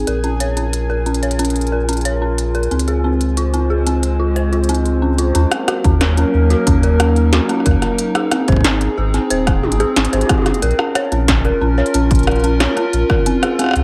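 Lightly reverberant, this melancholic, cerebral IDM cut from a longer piece moves at 91 BPM in a straight 4/4, in E-flat dorian. A warbling, nostalgic, lo-fi tape-like pad holds sustained chords through chorus, phaser and its own reverb, pumping against a sidechain and undergoing a filter sweep in the opening passage. Beneath it, a deep, round sine sub bass sits up front, softly thickened by tube saturation. An eerie, inharmonic FM synth bell spins detuned arpeggios that decay into digital delay. A bubbling, resonant stepped-filter texture murmurs in the background until 5.4 seconds. The industrial drum kit is up front, with a clanging snare, crisp hi-hats, rim clicks and toms echoing through delay, and a heavy electronic kick joins at 5.8 seconds as the chords cycle from Bbm and Dbmaj7 through Ebm7 and Ab.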